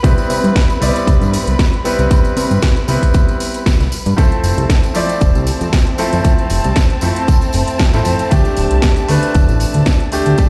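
Sleek and groovy, this nu-disco excerpt moves at 116 BPM in 4/4 with a light 16th-note swing, built on a clear concert grand piano whose accompaniment pumps against the sidechain and trails tape echo over Cmaj7, Fmaj7 and Dsus4 chords. A fat, saturated analog bass with a fast filter pluck sits up front beside a punchy, tape-warmed electronic kick, while a house kit adds a cracking snare and metallic hats, and a tambourine rattles in the background. Veiled, con sordino strings hold sustained chords behind it all, and the whole piece sounds as if played on a big sound system in a bare stone room.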